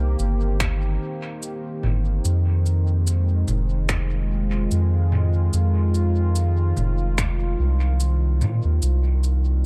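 A soft, round dub sub bass sits up front and dominates this short ambient dub excerpt, its deep tone carrying the low end throughout at a relaxed 73 BPM in 4/4 with a light swing on the sixteenths. Behind it, a smooth analog pad with a slow attack and long release holds sustained chords coloured by chorus, moving from Cm7 to Fm7 at 2.2 seconds and back to Cm7 at 8.8 seconds. An organic-sounding electronic kit of finger snaps, shaker and toms enters at 0.2 seconds, its parts trailing off in dub echo, while a tight electronic kick joins at 0.6 seconds and stops at 7.4 seconds. Both percussion parts have a tape-warm, small-room character that keeps them close. The mood is hazy and deep, with the mix leaning on echo rather than reverb to create its sense of space.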